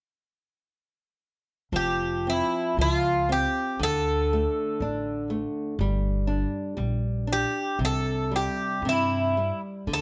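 Set in a moderate small-room reverb, this nostalgic, tender fado-style ballad, cut from a longer piece, moves with uneven, rubato beats as a small, bright fingerpicked nylon-string guitar and a woody, dark pizzicato upright bass with steel strings begin at 1.7 s, joined at 1.8 s by an up-front, metallic Greek bouzouki in plate reverb, its picked double strings and some octave-doubled strings carrying the melody.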